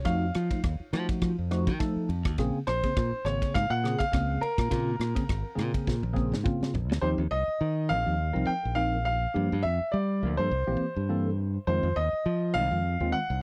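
A clear, smooth grand piano carries the melody up front across this funky, slick stretch of electric jazz fusion, cut from a longer piece and set in a lightly swung 4/4 groove. Beneath it, a bright tine electric piano plays accompaniment through its built-in speakers with a phaser, breaking into a short fill at 1.5 seconds. A modern fingered electric bass, direct and up front, holds down the low end throughout, while the harmony moves from a dominant F7b9 to Bbm9 before shifting to Eb69, Gm7, C7 and Fm7. A tight funk drum kit with a high-tuned snare, tight kick, ride cymbal, rim clicks and toms drives the first half, closing with a fill that ends at 7.0 seconds, after which the keyboards and bass carry on together. The sound is dry and close, like a 1970s studio session.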